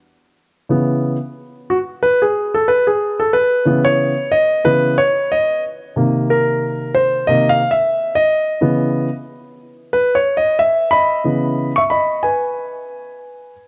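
Dark, lightly reverberant small-room sound frames this smoky, nocturnal hip hop excerpt in C# minor at 91 BPM with a 16th-note swing, where a solo concert grand piano, up front with a deep bass and short sustain, plays alone from 0.7 to 13.5 seconds across C#m7, Cm7 and C#m9 chords.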